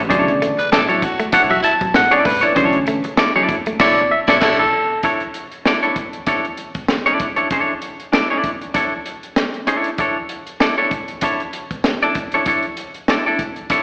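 Heard as a live gig through the venue's PA, with a recital-hall reverb and a thin AM-radio tint, this funk excerpt drives along at 97 BPM in 4/4 with a light swing on the sixteenths. A barky tine electric piano, lightly overdriven through a combo amp and sitting up front, takes the solo over a Bm11 chord, firing stabs across its range. Beneath it, a crunchy breakbeat kit plays through the whole cut, gritty and saturated with a punchy kick, high-tuned snare, dark cymbals and a rolled-off top. A woody, thumpy upright bass sits in the background, and a scooped, hollow-body semi-hollow guitar plays a low riff. A clean, compressed semi-hollow guitar plays accompaniment throughout with slapback echo and plate reverb. A breathy, raspy tenor saxophone with vibrato adds an edgy second line from 0.6 s, and after a band accent and a short break, the music moves at 5.0 s to Aadd11/D, where the drums and the clean guitar carry on together.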